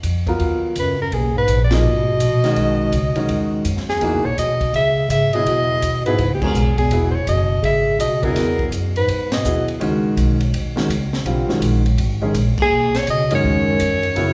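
A close-miked soprano saxophone leads this intense, spiritual modal jazz passage from the front of the mix, its subtone, vibrato and scooped notes shaping the melody from 0.8 seconds. A dark, smooth-topped bass clarinet carries a second line in the low register alongside it, also with vibrato, and both horns fall away at 9.7 seconds before returning at 12.6 seconds. Underneath, a baby grand piano plays warm, open chords with long sustain, moving from G#m7 to C#m9 and then Badd9 as the mode shifts from G# dorian to C# dorian. A woody, thumpy pizzicato upright bass on steel strings anchors the swung 4/4 groove at 166 BPM, while a compact, dry cocktail kit adds a punchy kick, a high-tuned snare, hi-hat and dark ride and crash cymbals, with the band hitting accents together throughout. The whole group sits in a wet recital hall reverb that gives this section of a longer piece a churchly depth.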